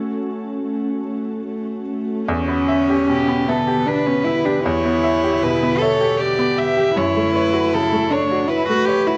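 Close, detailed microphones and light reverb frame this reflective, longing neoclassical fragment for piano and strings, moving in a rubato 3/4 at 77 BPM in E dorian, from F#m through a long Em7 and back to F#m. A bright, brilliant baby grand with short sustain and an intimate cello, bowed sul tasto with light vibrato and an airy tone, sit up front from the start, while a glassy, ethereal FM pad with ensemble chorus and its own reverb holds dark sustained chords in the background. At 3.1 seconds a single pure, floating violin, also played sul tasto with a soft attack and smooth top, enters to carry the melody.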